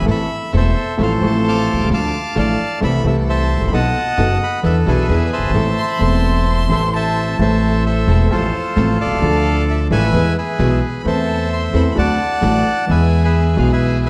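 Rubato 4/4 at 131 BPM, this sultry, passionate tango in A harmonic minor is cut from a longer piece, with a reedy, bright bandoneon carrying the melody up front over a warm, vintage-toned concert grand piano and a woody pizzicato upright bass. A clear, focused studio string section adds very quiet, lush bowed stabs, while a single violin enters at 5.8 s with an expressive second line full of vibrato and portamento until 7.4 s. The dark production sits in a moderate scoring-stage reverb, with harmony circling Am, Dm and E7.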